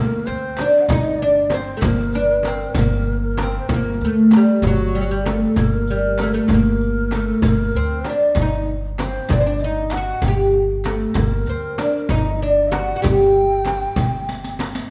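Soulful and full of longing, this short excerpt from an Arabic maqam ensemble moves in a straight, unhurried 6/8. A mellow, woody fretless oud carries the melody up front, its plectrum-plucked double strings giving a deep voice. Above it, a breathy low ney made of reed cane plays a soft-attacked second line with gentle vibrato, while a warm upright bass with steel strings supplies pizzicato support from the start. The percussion joins at 0.3 seconds. It includes a crisp, compressed and saturated metal-shell darbuka, a riq with bright jingles in a live room sound, and a large, close and dry frame drum entering at 0.6 seconds, all struck with hard hands, and the darbuka and frame drum sit in the background. A moderate recital hall reverb surrounds the ensemble, and a drum fill at 14.3 seconds rounds off the passage.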